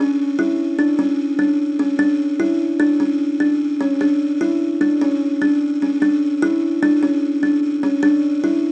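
This progressive instrumental piece moves at 149 BPM in 5/4 with a straight feel, and its mood is driving and intricate. A buzzing kalimba carries the whole passage alone from 0.0 to 8.7 seconds, staying in a narrow range from C#4 to E4. Its thumb-plucked tines have a warm, woody, hollow-box tone with a buzz and a ringing sustain. The instrument sits mid-forward and up front, with a light reverb around it. The recording has the worn, warbling character of old cassette tape, with a warbly pitch drift that colours the sound throughout this short cut from a longer piece.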